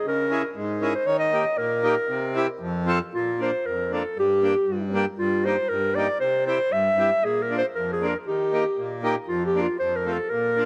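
A moderate plate reverb gives this bouncy, festive alpine folk dance-band excerpt, cut from a longer piece at 117 BPM in a straight 2/4 and settling into Bb major from 3.1 seconds, a gentle sheen as an up-front mellow clarinet with a soft attack carries the classical-style solo melody over a reedy, full accordion accompaniment in dry tuning.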